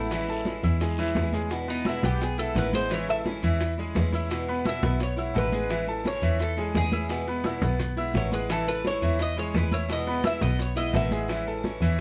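A straight 4/4 pulse at 172 BPM drives this relaxed Cuban son and guajira cut from a longer piece in E major, with ringing, medium-tuned congas close and dry in the background, very quiet round, low-tuned bongos with a compressed, saturated edge, grainy vintage maracas, and a raspy guiro that scrapes only until 1.5 seconds. A bowed double bass sits up front with a smooth, even tone and vibrato, while a boxy, picked old ladder-braced acoustic guitar fills in the accompaniment, finger squeaks audible. A brilliant concert grand piano plays arpeggios across a broad register, its deep bass and slapback echo adding sparkle. The metallic, double-strung Cuban tres leads up front through a plate reverb, then takes a solo from 1.5 seconds onward over a gently rocking alternation of Amaj7 and Emaj7. A light room reverb gives the whole a warm, easygoing glow.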